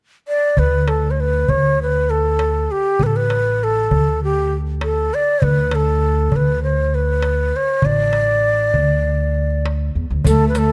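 Close, detailed microphones with light reverb capture a festive Arabic maqam ensemble in 4/4, where a breathy, mellow end-blown ney carries the melody up front over woody pizzicato upright bass and a crisp, small metal-shell darbuka in the background, before a rich, focused bowed cello with vibrato and a riq with bright jingles enter at 10.3 seconds just as the fragment ends.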